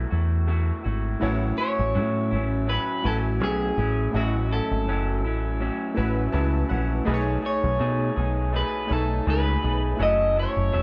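A dark, punchy dub-style picked electric bass sits up front in this hazy, nostalgic slice of indie bedroom pop, moving at 82 BPM in A lydian with a light sixteenth-note swing. Two slightly broken-up, lo-fi electric guitars play through a small old amp: one carries the melody, and the other picks out accompaniment with a warbly pitch drift, over chords moving from B7sus4 to A6, B13 and F#m7. Detuned sawtooth analog keys with chorus and a filter sweep join at 1.2 seconds and add a short fill from 6.0 seconds, all in a stone room with a moderate live-band reverb.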